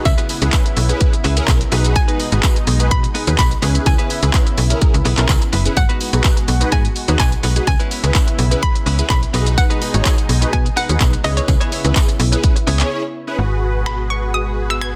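A hollow, nasal square-wave pluck melody with tape echo opens this confident, bittersweet dance-pop excerpt in C# minor at 126 BPM over a fat, detuned sawtooth polysynth and a thick, warbling unison pad, both pumping with sidechain, as a barely audible downlifter sweeps past while a clean, direct-recorded electric guitar riff with lush chorus, a snappy, metallic FM slap bass and an up-front pop kit with a punchy kick, snaps, claps, shaker and a softly clipped snare drive forward with a faint, jingly tambourine, circling C#m7, B6 and G#m7 in a dense, dry, heavily limited mix until a brief break at 12.9 seconds leads into a new section at 13.4 seconds.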